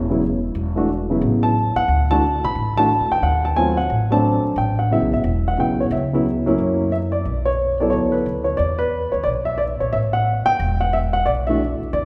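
Jazz piano trio excerpt in a sophisticated, relaxed mood, swinging in 4/4 at 179 BPM in A mixolydian, with a slightly low tuning of A4 = 436 Hz. A dark, mellow upright piano carries the melody up front, its intimate, vintage tone marked by audible action noise and short sustain. Beneath it the pizzicato upright bass sounds woody on steel strings, while chords move from A69 through D6, C#m and F#7 to Bm7 and E5 in a resonant recital hall with a 1.9-second reverb tail.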